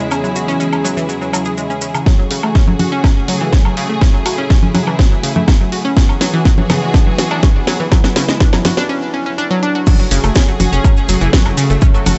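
Opening on woody, lush strings holding a C#m/E chord beside a round, chorused analog pluck arpeggio with delay, grainy maracas and a very quiet, detuned pad beneath a house kit of congas, woodblock, hi-hat and cracking snare, this cinematic, dramatic melodic techno excerpt in F# minor at 123 BPM brings in a punchy, up-front kick at 2.1 s and a tight sawtooth sequencer bass at 2.3 s for a build-up with a drum fill over F#madd9 and Eadd9, pauses for a break, then drops at 9.9 s as the maracas return, with the strings, pluck and bass pumping to the sidechain in a dry, dark-toned mix.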